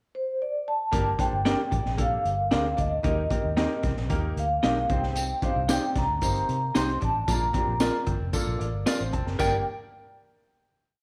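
A straight 4/4 backbeat soul groove at 113 BPM drives this short, urgent 1960s-style soul piece in G minor, moving through Gm, Eb, Cm and Bb before landing on a final Gm chord. After a brief pickup in which the vibraphone plays alone, a crunchy breakbeat kit comes in up front with a punchy kick, high-tuned snare and dark cymbals, its saturated, gritty sound rolled off at the top. Alongside it, a foam-muted electric bass plays a round, syncopated line with slides and chromatic approach notes. Struck with soft mallets and given a fast motor vibrato, the ringing, mellow vibraphone carries a motif-based melody of call phrases at the front of the mix. A woody upright piano keeps a quarter-note chord rhythm in close voicing and adds a short fill from 8.3 to 9.4 seconds, while a clean electric guitar cuts short chops on the backbeat and a hollow-body jazz guitar repeats a figure in the background. 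A distant tambourine joins on every beat at 5.2 seconds, and light studio reverb gives the piece a compact room sound.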